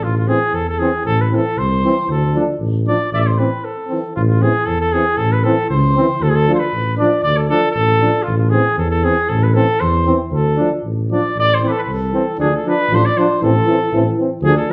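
Balkan folk in the brass band tradition, this fiery, virtuosic passage is cut from a longer piece and moves in a lightly swung two-beat metre. A flugelhorn carries the melody up front with a clear, vintage tone and light vibrato, while a tuba, also forward in the balance, anchors the bass with a dark sound, a smooth top and its own gentle vibrato. From 0.3 seconds, a close-miked trombone and euphonium fill in the accompaniment a little further back, the euphonium sharing the tuba's deep shading and slight vibrato. All four players lean toward a classical style, and the band sounds as if it is playing live together in one large studio, wrapped in a wet reverb. A brief break at 3.6 seconds is followed by a return of the opening material, and a new idea arrives at 12.4 seconds as the harmony keeps swinging between A minor and D minor.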